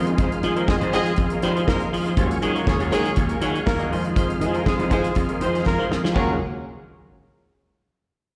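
A straight 4/4 disco groove at 121 BPM in Eb dorian opens this glamorous, sultry excerpt, driven by a dry, up-front 70s drum kit with a tight kick and a medium-tuned snare, and a growly, punchy overdriven slap bass, with a drum fill from 5.7 to 6.2 seconds. Tight pop-style horn stabs arrive at 0.4 seconds and a lush bowed violin section carries a smooth second line from 0.7 seconds, both with slapback echo, over clean tonewheel organ chords with key click, chorus vibrato and a slow rotary speaker. Further back sit a clean picked semi-hollow electric guitar and a worn, slightly out-of-tune tine electric piano through a combo amp, all heard as a live gig through the venue's PA with recital hall reverb as the chords move between Fm7 and Ebm11.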